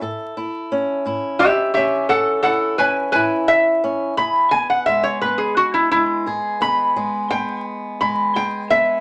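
Acoustic country blues with a swaggering, soulful mood at a slow 58 BPM in 12/8 in E major, this short cut from a longer piece opens with a bright, boxy, fingerpicked swing-style acoustic guitar on fresh strings, joined at 1.4 seconds by an up-front lap resonator guitar whose metallic, nasal slide melody is played with fingerpicks and a steel bar, all over a move from A to E at 4.2 seconds, set in a small, reverberant room and dusted with vinyl crackle.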